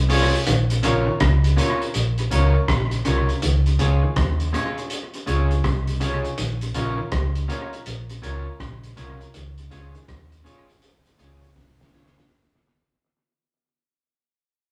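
Meditative and hypnotic, this roots reggae excerpt fades out across its length as a dark, round, foam-muted fingered bass sits up front beside a muffled, cloth-damped drum kit with a fat snare, tight kick and analog delay, while a twangy, slightly broken-up picked electric guitar and clear grand piano stabs move over Bbm and Db chords, a clean semi-hollow guitar plays arpeggios in the background from 0.5 s, and a drum fill arrives at 11.6 s, the whole captured as a rough, tube-saturated rehearsal-room recording with moderate stone-room reverb.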